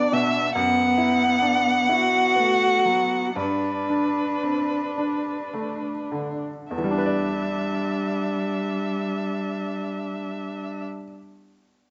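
Dry, with an open-air quality and softened highs, this fragile, longing fragment of neoclassical chamber music in E minor drifts in a rubato 6/8 at 33-46 BPM, slowing through its first 6.7 seconds as a veiled, up-front muted violin sings the melody over a close muted cello's second line with vibrato and portamento, a dark con sordino viola with slapback echo filling the accompaniment, and a bright, woody upright piano with short sustain that rings on alone after the strings stop at 10.8 seconds, until 11.9 seconds.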